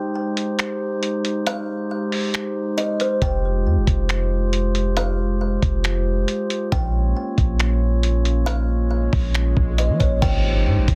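Over a half-time 4/4 groove of muffled, pitched-down sampler drums with a thumpy kick, softly clipped snare, finger snaps, hi-hat and crash, this blissful, dreamy cloud-rap fragment sets pure, glassy glass harmonica chords and a woody, ringing kalimba melody soaked in delay and plate reverb, before a deep, boomy 808 bass arrives at 3.2 seconds beneath the Abmaj7, Fmadd9 and Bbm changes, and a very quiet electronic swell and impact close it from 8.8 seconds.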